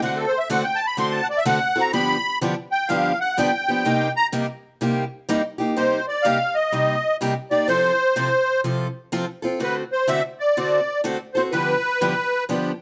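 A swinging 4/4 pulse at 125 BPM carries this bittersweet jazz excerpt, its eighth notes lilting with a gentle swing. A musette accordion takes the melody, its reedy, shimmering tone sitting up front with a dark, smooth edge and a touch of plate reverb. Beneath it, a picked steel-string acoustic guitar supplies the accompaniment with a bright, boxy parlour sound and fresh strings, also placed close and present. The accordion is featured as soloist through the opening section up to 5.8 seconds, before the music moves into a second section that runs to the end. The harmony travels from D7 and G7 to Cm7, then through F/C back to D7 and G7. Close, detailed microphones and a moderate studio reverb give the pair an intimate, clear room sound.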